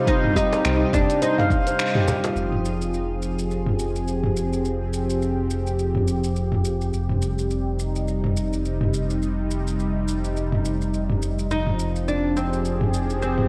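Meditative and warm, this organic downtempo excerpt in F minor moves at 105 BPM with a swung 16th feel, opening on a brief passage where a ringing steel handpan, a twinkling granular shimmer, a very quiet woody cajon and a deep, overdriven electronic kick gather around a mellow, plectrum-plucked oud, with the kick dropping out at 1.8 seconds on a band accent. Throughout, a detuned sawtooth analog pad with chorus and sidechain pumping carries the chords, moving from Cm to Fm7 and Cm/F after 2.4 seconds over a dark, smooth synth bass with tube saturation and an overdriven deep house kit of finger snaps, hi-hat, shaker and toms, before the delayed oud returns at 11.5 seconds. A lush hall reverb and worn, warbling cassette tape pitch drift color the whole recording.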